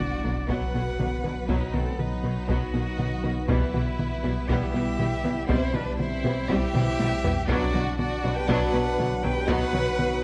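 Heard through close, detailed microphones in a concert hall with moderate reverb, this brooding, vast passage of a hybrid orchestral and electronic film score moves at 120 BPM in B phrygian, as a rich solo cello with portamento and delay sings the melody over an expressive violin section's second line. Around it sit a faint, distant violin section melody, background violas, hushed cello and double bass sections, and mellow French horns and clear trombones holding chords. A soft organ-like pad with ensemble chorus and a punchy, plucky analog bass riff sound alongside a deep sub bass with octave and hard-stick taiko drums that fill at 6.7 seconds, while a very quiet electronic impact opens the excerpt.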